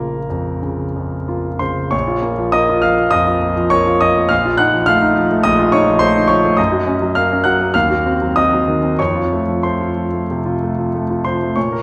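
Brooding and passionate, this brief cut from a longer romantic character piece for solo piano moves in 4/4 with a flexible rubato feel. The concert grand sounds clear and intimate, set up front with deep bass, long sustain and audible action noise, spanning Bb1 to Gb6 as the harmony passes through a diminished chord at 7.7 seconds before arriving on F at 9.0 seconds. A wet recital-hall reverb surrounds the polished tone with the resonance of a church or concert hall.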